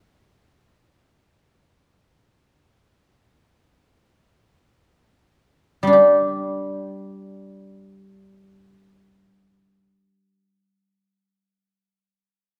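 In free time, after an opening passage that slows, this pastoral, elegant excerpt of Chinese traditional solo plucked strings features an up-front acoustic guzheng played with fingerpicks, its silvery, ringing tone sounding from 5.8 to 11.9 seconds within the lower-middle range and carrying into the moderate reverb of a concert hall.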